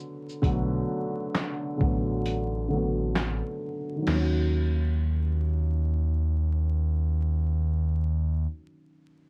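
A swung 16th-note groove at 66 BPM in 4/4 anchors this reflective, nostalgic lo-fi hip hop excerpt in Eb minor, where a dark, woody upright piano with audible action noise and a low-pass filter sweep plays accompaniment from 0.0 to 9.3 seconds, a compressed, pitched-down sampler-style drum kit with a thumpy kick, overdrive, handclaps, shaker and crash runs from 0.3 to 4.3 seconds with the kick muted from 2.3 to 4.1 seconds, and a smooth, detuned sawtooth-and-triangle synth bass glides with portamento and vibrato beneath the Bm7 to Ebm7 change, all under light reverb and vinyl crackle.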